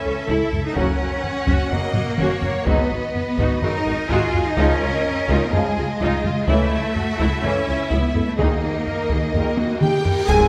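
Epic orchestral film score at 126 BPM, dramatic and epic, with bowed string sections carrying everything from the start: lush warm violins on the melody, a rich second violin line in the background, clear and intense cellos, expressive violas and rich double basses. Hard-stick taiko ensemble drums power the rhythm with fills, while dark French horns and vintage-toned trombones hold sustained chords behind them over a progression moving from A/C# through G#m7 and C#add9 to a closing D#sus4. Late in the passage a very quiet dark cymbal swell with clash cymbals and concert bass drum arrives at 6.5 seconds, hard-mallet timpani strike at 8.4 seconds, and a huge cymbal swell and impact joins an airy flute line for a full accent at 10.3 seconds, all set in a moderate scoring-stage reverb.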